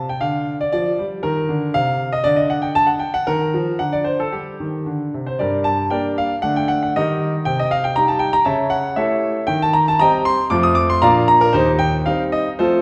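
A wet recital-hall reverb, heard from further back in the room, surrounds this elegant, graceful classical-period sonatina in G minor, a 12.8-second cut from a longer piece in 2/4 at 117 BPM with a rubato feel. A solo concert grand piano with a clear, vintage tone and deep bass plays throughout, spanning Eb2 to Eb6. The harmony settles on G minor at 5.4 seconds, then passes through Eb, C minor, A7 and F before coming to rest on Bb and C minor.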